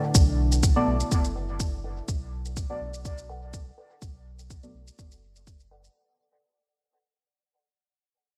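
Dub techno at 124 BPM in B minor, nocturnal and cavernous, sitting on a Bm7 chord: a dark, detuned ambient pad with chorus and sidechain pumping holds sustained chords while a warbling, lo-fi pluck riff drifts through lush chorus and dub echo, a round, tube-saturated sub bass, an up-front, tape-warm electronic kick and a tape-warm shaker drive the groove, and a soft, phased chord stab with dub echo sounds from 0.8 to 4.8 seconds, all in a bright 1980s-style digital production with light reverb that fades out across this short clip from a longer piece.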